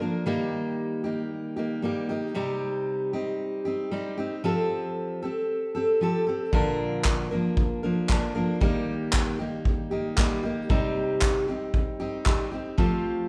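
Acoustic pop at 115 BPM with a light swing, carefree and heartfelt, this short excerpt opens with an up-front, warm fingerpicked dreadnought steel-string guitar moving through Eb, Cm and Fadd9 before a soft brush drum kit, distant and roomy yet with a punchy kick and handclaps, joins at 6.5 seconds, all set in the moderate reverb of a recital hall.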